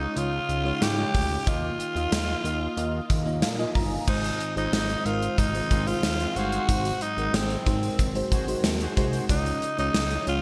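Romantic and nostalgic, this short excerpt from a longer 1980s-style pop piece moves at 92 BPM in a straight 4/4, settling into Ab mixolydian at 4.1 s. Up front, a growling tenor saxophone carries the melody between C4 and G4, breathy and raspy with light vibrato and a touch of delay. Beneath it, an FM electric piano with a soft pad layer supplies dreamy, chorused and phased accompaniment, adding a fill from 3.1 to 4.1 s, while a very quiet vintage string machine holds sustained viola chords and a fat, detuned analog bass anchors the low end. A gated 80s drum kit enters at 0.2 s with a tight kick, medium-tuned snare and bright cymbals in a stone-room gated reverb, joined by a jingly, close and dry tambourine. Dark, nasal analog synth brass stabs sit in the background from 5.7 to 9.2 s, and the whole is framed by a lush hall reverb and bright digital production, as the chords move from Dbadd9 through Ab6 and Ab7 to Db.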